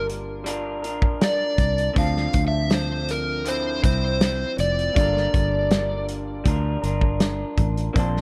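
An overdriven slide guitar carries the melody up front, coloured by analog chorus and tape echo, before falling away at 6.1 seconds in this nostalgic, laid-back slice of indie and bedroom pop at 80 BPM in a straight 4/4. Beneath it, a slightly broken-up electric guitar through a small old amp adds lo-fi accompaniment with subtle chorus and vibrato, while a woody upright piano with a cassette-tape character sits in the background over Gm7 and Dm9 chords. A round, foam-muted fingered bass and a loose acoustic kit with a tight kick and medium-tuned snare hold the bottom end in a small room with light reverb and a dusky production.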